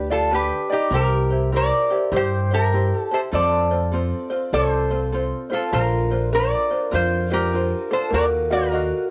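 Relaxed and dreamy, this swung Hawaiian excerpt puts a metallic, nasal lap resonator guitar up front playing the slide melody through a cassette-tape haze, over a light fingerpicked ukulele and a woody pizzicato upright bass, while a buzzing, ringing kalimba with a hollow-box tone joins with a second line at 4.5 seconds, all captured as a home cassette recording with light reverb.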